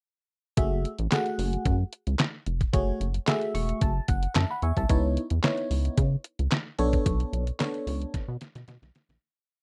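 A rubbery, hollow square-wave bass sits up front, bouncing through a fat, syncopated boogie line with chromatic approach notes and a resonant filter pluck. This short, complete piece of early-eighties boogie funk has a slick, late-night mood. Beside the bass, a detuned 8-bit digital drum machine lays down a mid-tempo boogie beat, with a thumpy kick, a medium-tuned snare layered with handclaps, and hi-hat. A glassy FM electric piano with a bell-like attack, treated with chorus and phaser, pushes drop-2 chords over minor-ninth harmony and slips in a short fill at 3.3 seconds. The dry, close studio sound keeps every part present, and the piece begins fading at 7.1 seconds as a drum fill rounds it off at 8.1 seconds.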